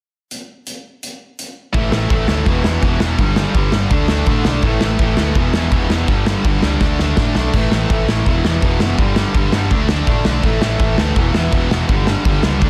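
A loose acoustic drum kit sits up front in this rowdy, upbeat punk rock excerpt, its punchy kick, medium-tuned snare and dark cymbals ringing in a pumping studio room with a rolled-off top. The kit opens alone before the rest of the band crashes in at 1.7 seconds. From there, an overdriven semi-hollow guitar with a hollow-body glow drives a picked riff over a repeating cycle of A5, E5, G5 and D5 power chords. Two tight, bright, distorted guitars join in, one double-tracked and the other tucked in the background. Beneath them, a growly, amped electric bass adds punch and bite. A drum fill at 6.8 seconds leads into the next pass of the progression, and the dry, dense, heavily limited mix keeps the energy pressed close.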